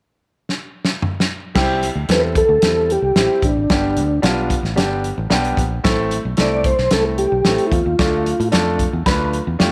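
Uptempo 1960s-style soul at 112 BPM in C major, uplifting and danceable, opens with a drum fill from 0.5 s on an airy, polished acoustic kit with a fat snare and punchy kick, then a woody upright piano enters at 1.5 s and a foam-muted fingered electric bass joins at 1.6 s as the chords move from C through G and Am to Dm, while a soft, flute-like tonewheel organ carries the melody from 2.1 s with chorus vibrato and a stopped rotary speaker, all set in a moderate spring reverb in this excerpt from a longer piece.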